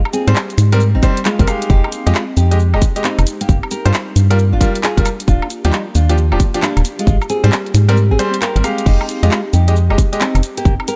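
The rhythm skips along at 134 BPM in a swung two-step garage groove, with a tight, up-front electronic kick arriving at 1.0 s and dropping out briefly between 8.0 and 8.9 s. A tape-warm garage kit layers hi-hat, shaker, finger snaps, handclaps, woodblock and crash cymbal around it, while a dark, hollow FM bass with an organ-like, percussive bite pumps against the kick in the low register. Above, a fingerpicked nylon-string guitar carries the melody with a fresh, classical tone and a touch of delay, and a brilliant grand piano adds short, bright stabs. Far in the background, an ethereal, airy pad holds sustained chords, its detuned sawtooth shimmer colored by chorus, phaser and reverb and pumping with the beat. In F dorian, this soulful UK garage excerpt cycles through lush ninth and seventh chords, beginning on Abmaj9 and moving through Fm9, Gm7 and Ebmaj9 within a spacious digital ambience.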